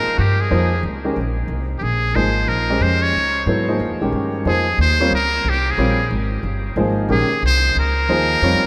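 Searching and intense, this brief excerpt of swung modal jazz in Bb dorian moves at a brisk 182 BPM over a single Bbm9 chord. A metal-muted trumpet carries the solo melody up front with a buzzy, brilliant edge and light vibrato, while a warm baby grand piano supplies short-sustained accompaniment and a pizzicato upright bass adds a woody, thumpy low end. The trio sounds as if it is playing in a vast, echoing cathedral, with a long, wet reverb surrounding the performance.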